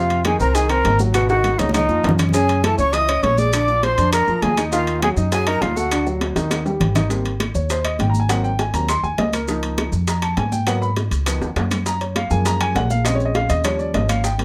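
Close, detailed microphones and a light reverb give this sunny, danceable Afro-Cuban jazz a present, intimate sound, moving in a straight 4/4 at 202 BPM. A dark, breathy trumpet leads up front with light vibrato and scooped notes, while a bright metal flute with crisp chiff and tape echo carries a second line above it until 6.1 seconds. Woody upright piano and pizzicato upright bass with steel strings sit up front throughout, and the piano takes a solo from 7.1 seconds as the harmony settles into Ab major. Behind them, thick-skinned high-tuned congas, tight vintage bongos and woody claves fill the background, grainy maracas and ringing metal-shell timbales join the percussion, and drum fills punctuate the groove. The clip is cut from a longer piece, its chords moving from Fm7 through Abmaj7 and Gbmaj7 to close on Eb7.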